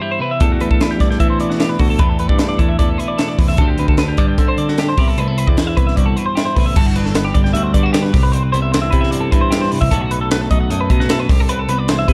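Up-front, gritty fusion drums with a high-tuned snare, punchy kick and pumping small-room sound drive this intricate, restless math rock and midwest emo excerpt at 152 BPM in E minor. A bright, growly picked bass enters together with the drums at 0.4 seconds beneath two compressed twelve-string electric guitars, one warm and clean in accompaniment and the other twangy with slapback echo playing high arpeggios. Together they move from Em11 and Cmaj7 into Gmaj7, Cmaj7, B7 and back to Cmaj7, all within a dark production with light reverb.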